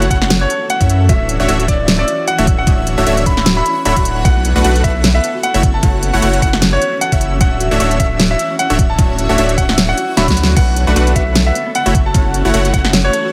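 A knocking, layered electronic kick drives this lush, euphoric future bass excerpt at 152 BPM in a swung half-time feel in D major, alongside a thick saturated sub bass, a pop drum kit with a fat snare, crisp hats and a fill at 10.2 seconds, a punchy detuned supersaw stab riff and a clear concert grand piano melody that both pump with sidechain and trail digital delay, a soft, dreamy chorused lead arpeggiating in the background, a thumb-plucked Celtic harp ringing very quietly, and a shimmering granular pad holding sustained chords from 0.5 seconds, with the harmony cycling through F#m7, Dmaj9 and Bm7 under light reverb.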